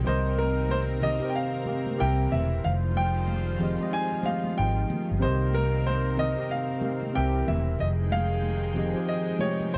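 R&B with a neo-soul lean, this short excerpt has a smooth, late-night mood, moving at an unhurried pace in 4/4 with a gentle swing on the sixteenths. A worn, slightly out-of-tune tine electric piano sits up front with the accompaniment, its clean tone coloured by a combo amp, while a bright, brilliant grand piano carries the melody from 0.1 seconds. Underneath, a round, foam-muted fingered electric bass gives a dark, amped low end, and a lush, thick unison pad holds sustained chords with a warbling, detuned chorus sheen and slow attack. Further back, a clear, punchy horn section adds tight stabs with light vibrato and octave doubling, and high-tuned congas with a damped, thick-skinned sound fill out the percussion. The harmony cycles through Cm7, C7 and Fm9 twice, and the dry, close sound recalls a 1970s studio session.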